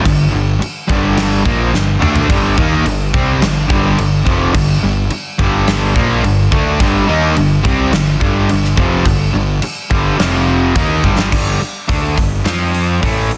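A dense, heavily limited modern master with a light touch of small-room reverb opens this heavy, menacing hard rock fragment, cut from a longer piece in G minor at 106 BPM in a straight 4/4. Up front, a bright, double-tracked distorted electric guitar drives the riff, with a compressed edge, while a second, overdriven electric guitar plays its own riff further back in the mix with a warmer tone. Underneath, a picked electric bass growls with fuzz and overdrive, its direct-and-amped sound anchoring the low end. A gated 80s drum kit sits forward with a punchy kick, a medium-tuned snare, airy, polished room ambience and bright cymbals, and it plays a fill around 1.7 seconds. The harmony holds on G minor before moving through power chords, and at 11.3 seconds the background guitar drops out as the music shifts into a brief new section that moves from G5 to F5.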